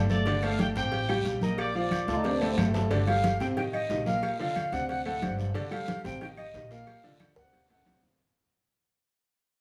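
A worn, brilliant baby grand piano and a dark, thumpy upright bass with woody gut strings open this fiery, passionate salsa excerpt, the piano sitting up front with its action noise audible and notes that decay quickly. Close, thin-skinned congas, a raspy guiro, ringing vintage agogo bells and timbales, tight high-tuned cowbell and bongos, and very quiet claves fill in the percussion, with several of these tucked into the background. A punchy trumpet section carries the melody with vibrato until 2.4 seconds, and a clear trombone section briefly takes the second line behind it. A drum fill leads into the second section at 2.9 seconds, where an airy, reedy concert flute with a soft attack takes over the melody up front. That section moves through suspended, add9, major and dominant seventh chords as the music fades out, with another drum fill near the close. A light small-room reverb surrounds the whole.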